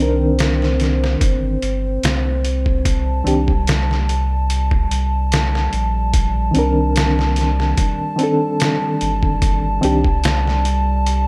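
A gritty, compressed, sampler-style trip hop drum kit sits up front from 0.4 s, pitched down and re-recorded in a large room, with a thumpy kick, medium-tuned snare and hi-hat in straight 4/4 at 73 BPM. In this brooding, cinematic excerpt in C dorian, a reedy, worn and slightly out-of-tune electric piano plays accompaniment through its built-in speakers with fast and harmonic tremolo and tape echo until 10.1 s. A round sine sub bass sits up front, and a dark, nasal, detuned analog pad with chorus holds a sustained Cmadd9 chord in an otherwise dry mix.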